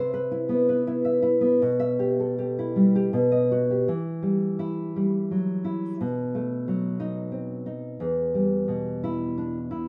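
A nylon-string guitar opens alone at 0.0 seconds, carrying this short, passionate and intimate excerpt from a longer romantic piece for solo classical guitar. The tone is acoustic and dark, thumb-plucked and sitting up front, ranging from E2 up to E5. The music is in E minor and 3/4, moving with rubato at roughly 77-91 BPM. The opening phrase passes through Cmaj7, Em/B and B, and a new section begins at 3.9 seconds, resting on Em, moving to B7b9 and returning to Em. A wet studio reverb gives the guitar some space around it, while the rough home-demo mix keeps the sound close and personal.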